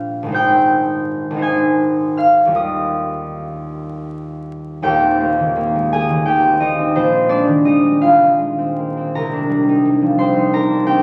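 Mysterious and gentle, this short cut from a longer classical solo harp piece drifts in 6/8 at around 51-60 BPM, counted in dotted quarters, with a rubato feel in Eb major, tuned to A4 = 436 Hz. The concert harp plays alone throughout, fingerpicked, ringing and up front, spanning Eb1 to Ab6 as harmonies such as Abmaj7, Bb11 and Cm9 unfold, with a second passage beginning at 4.8 seconds. The sound carries a moderate recital-hall reverb blended with a club-style reverb, captured on a phone in the room and dusted with vinyl crackle.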